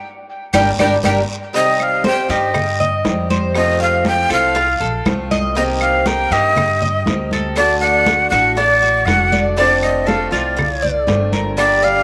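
A breathy jazz flute sits up front with a crisp, chiffy attack, vibrato, an unsteady tone and a tape echo, carrying the melody between D5 and G5 in this danceable, nostalgic slice of Cuban son and guajira at 120 BPM in a straight 4/4. Beneath it, a metallic Cuban tres with doubled strings spins bright arpeggios, while a boxy, picked acoustic archtop guitar supplies the accompaniment. A growly, thumpy pizzicato upright bass with steel strings anchors the low end, and thick-skinned congas played with soft hands fill out the percussion, with tight high-tuned bongos, dry woody claves and a raspy, saturated guiro tucked in the background. The excerpt, cut from a longer piece, opens with a band accent and a drum fill from 0.8 to 1.5 seconds before the harmony moves from G minor through C minor, F, Cm7 and D to F6. A moderate spring reverb lends the ensemble a nostalgic sheen, and the claves drop out at 11.8 seconds just before the rest of the band stops at 12.0.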